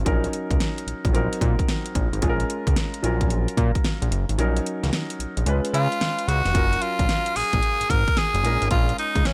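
A raspy, gritty tenor saxophone takes the solo spotlight at 5.7 s, its edgy vibrato sitting up front over a punchy, confident new jack swing R&B groove cut from a longer piece. Beneath it, a thick, detuned analog bass with a sawtooth filter sweep and an electronic, layered pop drum kit with metallic hats and a fat snare drive the swung beat, with the kick dropping out from 4.4 s to 6.5 s. An intimate concert grand piano, its action noise audible, fills in the chords within a small room ambience.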